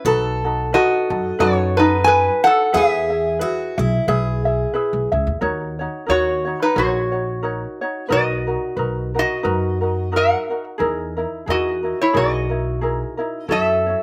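Sunny and relaxed, this Hawaiian excerpt moves at an easygoing pace with a gentle swing on the eighth notes. A metal-body resonator slide guitar carries the melody from 0.7 seconds, sitting up front with a metallic, nasal voice played with fingerpicks. Beneath it, a mellow, light ukulele is fingerpicked as the accompaniment and also sits close to the listener. A pizzicato upright bass with steel strings gives a woody, warm foundation throughout. A bright, full-bodied jumbo steel-string acoustic guitar adds a picked second line at the start and drops out at 5.1 seconds, just before the harmony shifts into lush chords such as Bmaj7 and Emaj9#11. The sound is dry and open-air, with little reverb and a direct, unadorned feel.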